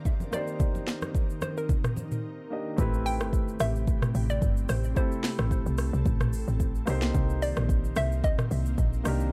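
An amapiano excerpt with a hypnotic, soulful mood and a lightly swung groove, where a hollow, warbling square pluck carries the melody with chorus and tape echo over concert grand piano chords, an ethereal pad pumping under sidechain, an afro-pop kit with deep kick and sharp snare, and background congas that drop out before a break, after which a woody log drum bass punches in for the drop at 2.8 seconds.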